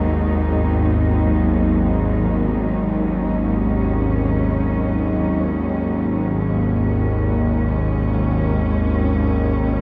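Cavernous and desolate, this dark ambient drone fragment in free time sits in a vast, echoing space, where a tense, nasal, sawtooth-edged bowed-like drone with vibrato and a noise layer holds low beneath a veiled, con sordino cello section sustaining dark chords up close for the full 9.8 seconds.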